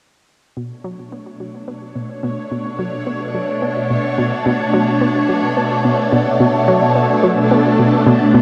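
From 0.6 seconds a swirling, up-front phased string machine, a round, nasal analog pluck riff with tape echo and a bubbling, resonant stepped-filter texture high above all fade in together over a sustained Bm7, making this expansive, mysterious slice of sequencer-driven ambient space music, bathed in huge reverb and the warbling pitch drift of worn cassette tape.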